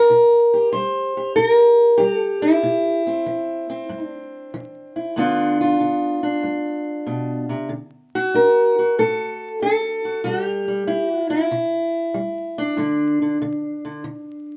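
Acoustic country blues with a soulful, swaggering mood, this short excerpt moves at 95 BPM in 4/4 with a 68% swing on the eighth notes. A fingerpicked steel-string acoustic guitar carries the whole performance alone, its dark, boxy parlour tone sitting up front from G2 up to C5. The chords move from C7 to G7 at 5.2 seconds, then through D and C before landing on a bare G5 near the end. The instrument is tuned slightly sharp of standard pitch, at A4 = 445 Hz. A wet small-room reverb gives the feel of players performing live together in one space, and a layer of vinyl crackle adds an aged texture. The clip is cut from a longer piece and runs 14.6 seconds.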